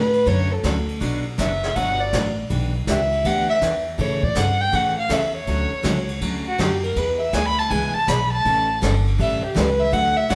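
A cheerful, swinging western swing tune moves along at 161 BPM in 4/4, with a lilting swing on the eighth notes, in this short cut from a longer country piece. A dark, smooth-topped fiddle carries a solo across the whole 10.3 seconds, bowed sul tasto by a single player with light vibrato and sitting up front in the mix. Beneath it, a woody, thumpy upright bass with gut strings is plucked, also up front, while a brushed jazz kit enters at 0.1 seconds with dark cymbals, a medium-tuned snare, a boomy kick, hi-hat and ride. A bright, full-bodied picked dreadnought acoustic guitar joins at 0.3 seconds as accompaniment, finger squeaks audible on its strings. The chords run from Dmaj7 through Bmadd9, Em7, A, Dmaj7 and E before landing on A7, and the whole band sounds as if playing live together in one large studio, wrapped in a lush, wet reverb.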